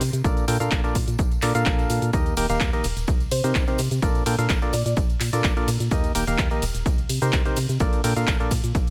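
A straight 4/4 groove at 127 BPM drives this feel-good, joyful piano house excerpt in Bb major, built on a punchy, tape-warm electronic kick that enters at 0.2 s, an analog drum machine playing cabasa, handclaps, hi-hat and ride cymbal, and a close, dry tambourine sitting in the background. Up front, a hollow, mellow organ stab riff carries chorus, gritty 12-bit sampler character, tape echo and sidechain pumping over a dark, organ-like FM bass that also pumps, as the chords cycle through Bbmaj7, Eb and Cm7. A sparkling, bell-like FM electric piano melody with chorus and tape echo appears briefly between 3.3 and 4.9 s, and the recording sits in a digital ambience.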